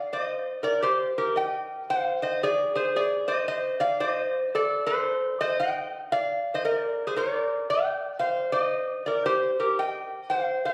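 Heard through a phone in the room and wrapped in studio reverb, compression and the 1.8-second bloom of a moderate concert hall, this languid, dreamy Hawaiian excerpt of 10.7 seconds features a single up-front metal-body resonator slide guitar, acoustic and nasal with a metallic edge, played with fingerpicks between G4 and G5 at 114 BPM with a swung 4/4 lilt, tuned to A4 = 435 Hz, drifting through Eb, Ab, Am7b5, Bb and Cm7.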